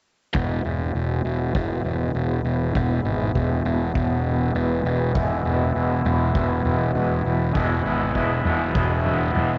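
Psychedelic rock at 100 BPM in E major, hazy and hypnotic, where a biting, double-tracked overdriven guitar riff with tremolo sits up front beside a round, fuzzed fingered bass, a soft-mallet kit of boomy kick and toms stays in the background, and from 1.2 seconds a very quiet, ominous rumbling drone with a slow attack adds depth, all in a light small-room ambience with a dulled top end.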